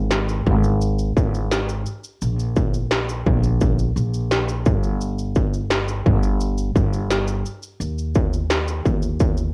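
A woody, dark upright bass opens the recording, its gut strings giving a thumpy pizzicato tone as it moves between G1 and Eb2. Almost at once an industrial drum kit joins in, electronic and produced, with a distorted kick, a clanging snare and a shaker, all colored by distortion and a cassette tape character and re-recorded in a large room. This short acoustic pop fragment, cut from a longer piece, sits at 86 BPM in a straight 4/4, with a reflective, wistful mood. Both parts sit up front in a dry home recording made on cassette, tuned slightly low to A4 = 438 Hz. The acoustic bass is paired with the distorted, electronic drums throughout the brief passage.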